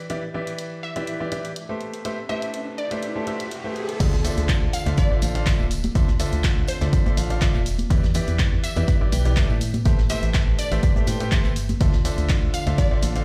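Bittersweet yet energetic, this piano house piece moves at 123 BPM in 4/4 with a light swing, set in D dorian and cut from a longer track. A clear, smooth concert grand piano plays the riff from the start, its vintage 12-bit sampler grit, sidechain pumping and delay giving it a deep-bottomed, slightly lo-fi character, while a punchy analog drum machine supplies cabasa, handclaps, hi-hat, ride and crash with a tape-warm tone. From 0.8 seconds a glassy, crystalline wavetable pluck carries the melody with chorus and delay, and an electronic riser builds from 1.6 seconds into the drop at 4.0 seconds. There an up-front electronic kick arrives alongside a hollow, dark, organ-like FM bass that pumps with the sidechain, a distant, very quiet brush kit with a fat snare and hi-hat, and tambourine and congas played with hard hands in the background. The chords cycle through Em7, Am9 and Dm9, and the whole mix sits in small-room ambience with a large studio reverb, as if played on a big sound system in a bare room.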